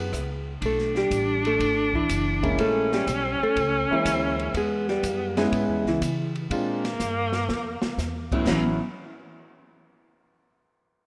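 A rough home-demo mix sits in a lush hall reverb, giving this short swinging cut from a longer small-group jazz piece a roomy, sophisticated air. At 122 BPM in 4/4 with a swing feel in A major, a dark, clean hollow-body electric guitar carries the picked melody. A clear alto saxophone with vibrato and a soft attack sits up front on the second line. Underneath, a woody, thumpy pizzicato upright bass and an acoustic drum kit with dark cymbals, a medium-tuned snare and a boomy kick drive the groove, with a drum fill from 7.0 to 8.0 seconds. A grand piano with long sustain and audible action noise joins the accompaniment at 2.4 seconds, as the harmony moves through Bm7, A7b9/Bb, C#m7 and Bb7 before settling on A6 at 8.5 seconds.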